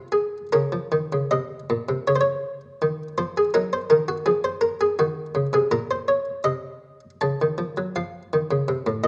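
Dark, warm sound in a moderate recital-hall reverb frames this short, flowing, introspective fragment of a baroque-style suite movement in Bb minor at 82 BPM in a rubato 4/4, where a solo buff-stop harpsichord, muted, lute-like and plucked close up front, moves from Bbm through Ebm to F7/C.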